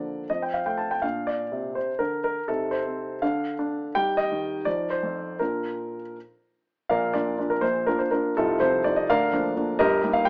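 Heard through an AM-radio filter and light reverb, this short graceful, playful fragment of a classical-period sonatina in 6/8 features a solo grand piano, intimate and up front with audible action noise, moving with rubato from its opening phrase into a new section at 6.9 seconds before being cut off mid-piece.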